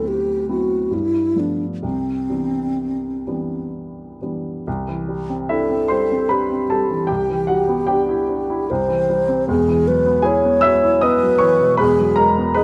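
Classical impressionist duo in C lydian and 3/4, luminous and dreamy, moving with rubato between 62 and 80 BPM, where an airy, hollow alto flute with vibrato and soft attacks sings the melody up front over a present baby grand piano accompaniment spanning E1 to E6, through harmonies such as D13, G13 and Cmaj9 that shift at 4.7 seconds toward Cadd9, Eadd9 and Abm7/E, all in a dark, warm production with light reverb, cut from a longer piece.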